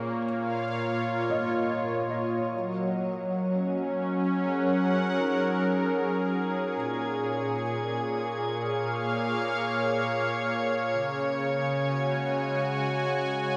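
Ambient and peaceful, this piece is led by a bright, detuned sawtooth analog pad up front holding sustained chords with chorus, tremolo and shimmer reverb, while a soft, boxy felt-muted upright piano with audible action noise plays mellow arpeggios through tape echo in the background until 7.6 s, and a glassy, drifting sine-toned glass-harmonics texture enters at 3.4 s, all within an echo-heavy mix bathed in wet plate reverb.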